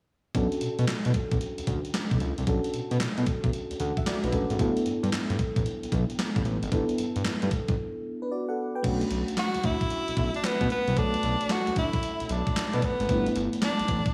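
New jack swing R&B with a confident, punchy attitude rides a swung groove, cut from a longer piece. A clean 12-bit drum machine sits up front with a thumpy kick, medium-tuned snare, hi-hat, handclaps and crash cymbal, its sampler-style hits tape-warm and re-recorded in a large room. A fat, detuned sawtooth bass with a saturated filter pluck holds the low end up front, while a mellow FM electric piano with a noise layer and slapback echo comps on a two-chord vamp of Bm7 and G6. After a short break at 7.8 seconds, a new section opens and an edgy tenor saxophone enters at 9.4 seconds for a forceful, jazz-style solo full of vibrato and scooped notes, also carrying slapback echo. A lush hall reverb gives the mix a big arena sound alongside a small room ambience.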